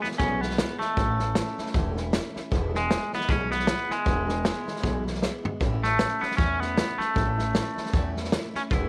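A lightly reverberant studio sound frames this short, rollicking rockabilly cut, taken from a longer piece and moving with a light swing at 155 BPM in 4/4. Up front, a twangy electric guitar carries the melody with a bright, clean, scooped tone, its picked lines trailed by tape echo. Beneath it, a picked steel-string acoustic guitar sits in the background, full-bodied with fresh strings, filling out the chords as the harmony moves between E and A. An upright bass played pizzicato gives a woody, thumpy bottom from its gut strings, while a vintage drum kit, punchy in the kick and natural in its small-room sound, drives the rowdy feel with hi-hat, snare and toms. A drum fill at 5.2 seconds tumbles into the return to A at 5.6 seconds, keeping the energy high until the cut ends near 8.9 seconds.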